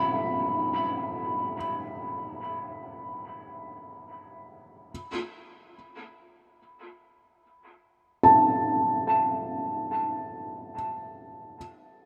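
A felt-muted upright piano plays alone in free time, its soft, mellow notes sitting up front and intimate in a high register while a dub echo trails behind them. This short ambient excerpt feels peaceful and luminous, bathed in a wet plate reverb with a long 3.5-second tail. The piano stops at 11.6 seconds as the passage fades out between 9.3 and 12.1 seconds.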